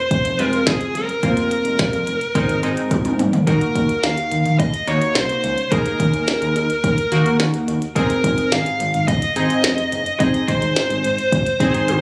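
Synth-pop at 107 BPM in a straight 4/4, melancholic yet driving, this excerpt from a longer piece opens with a dark, fuzz-distorted lead guitar carrying the melody up front through tape echo. A glitchy electronic kit with a soft kick, tiny snare and clicky hats joins alongside a fat, detuned sawtooth bass and a punchy, funky polysynth comp with a filter sweep and chorus, moving through Fm, Fsus4 and Ab before a drum fill at 2.9 seconds leads into a new section on Ebm at 3.5 seconds. The sound carries moderate studio reverb and the roomy club ambience of a phone recording.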